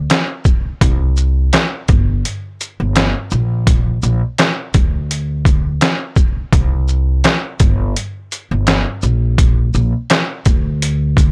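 An 84 BPM groove in 4/4, lightly swung at 54% on the sixteenths, drives this short boom-bap hip-hop passage cut from a longer piece. The mood is reflective and dark. A pizzicato upright bass opens at 0.0 s, its woody, steel-strung tone sitting up front with a touch of transformer saturation as it moves between G1 and D2. At 0.1 s a sampler-style trip hop kit joins, compressed and pitched down, with a thumpy kick, a medium-tuned snare, hi-hat, handclaps and shaker that sound re-recorded in a small room and placed close to the listener. The drums sit slightly louder than the bass. The whole recording is dry and gritty, with a hardware character and little reverb, and both parts carry on together to the end at 11.3 s.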